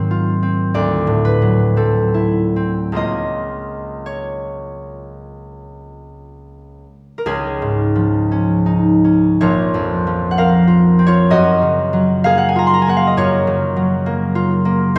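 Graceful and serene, this classical excerpt for solo concert harp drifts in a rubato 4/4 at 48-68 BPM in Db major, its ringing, fingerpicked tones sitting up front across a span from Bb1 to C6 inside the wet reverb of a recital hall, while the harmony moves from Ab13 and D9 toward Dbadd9, Bbmadd9 and Gbmaj7.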